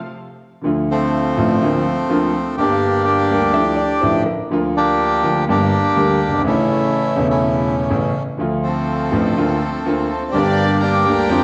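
Melancholic and passionate, this rubato tango, cut from a longer piece, opens on a brief band accent before a reedy, airy bandoneon carries the melody up front over a boxy concert grand piano with deep bass and long sustain, while a clean, compressed hollow-body electric guitar adds a short background line at 3.5 seconds and a bowed, gut-string violin section in period style enters behind from 8.7 seconds, the whole set in a dark, reverberant scoring-stage sound.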